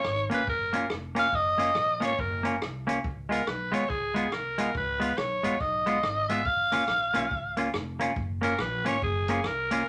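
A moderate studio ambience frames this bouncy, upbeat ska excerpt in F# major at 140 BPM, swung in 4/4 and moving from F#maj7 to C#7 and back. A raspy, gritty alto saxophone takes an up-front solo with vibrato and a punchy, edgy bite, while a bright, twangy clean electric guitar, fingered and compressed, joins at 0.3 s as close accompaniment. Further back, a woody, dark pizzicato upright bass and a vintage kit of hi-hat, punchy kick and rim click, rolled off on top, keep the groove.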